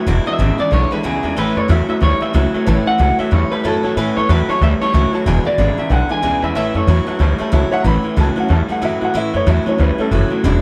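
A swung, rollicking rock shuffle in 4/4 opens this upbeat excerpt cut from a longer piece, rocking back and forth between E7 and A chords. Pizzicato upright bass sits up front with a woody, thumpy gut-string tone, joined by a bright, full-bodied jumbo steel-string acoustic guitar playing picked accompaniment. Two twangy, slightly broken-up electric guitars run through a small old amp: one plays a low riff with a warbly pitch drift, while the other carries a lo-fi picked melody treated with analog delay until about 7.7 seconds. A dark, mellow upright piano with long sustain enters at 2.7 seconds and takes a solo in the closing section from 7.9 seconds. Light studio reverb gives the ensemble a natural room feel.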